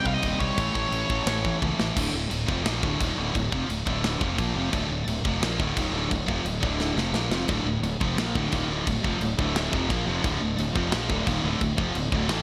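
Dark and heavy, this 174 BPM D minor heavy metal excerpt opens with a brief nasal lead guitar line through a parked wah, overdrive and digital delay, over picked riffs from a bright high-gain guitar, a double-tracked overdriven guitar in the background and a sludgy guitar that drops out and returns at 7.5 seconds, all anchored by a growly, fuzzed fingered bass and an up-front, tight drum kit with bright cymbals and gated reverb. The kit's fill at 1.6 seconds punctuates the move from Cm and A into the Dm section, and another fill follows at 6.8 seconds, all set in a lush hall reverb with bright 1980s-style digital production.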